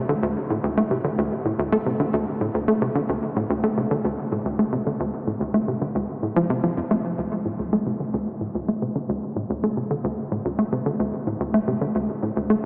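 Drenched in a cathedral-sized reverb with a long 6.7-second tail, the recording has a dreamy, small-speaker sound that feels expansive and hypnotic. This ambient fragment in D minor moves at 110 BPM in straight 4/4, carried entirely by a solo sequencer bass from 0.0 to 12.6 seconds. The bass is punchy and dark, with a detuned sawtooth-and-square edge, a fast filter pluck and subtle chorus and tape echo. It sits up front and drives through a shift into a new section at 7.2 seconds.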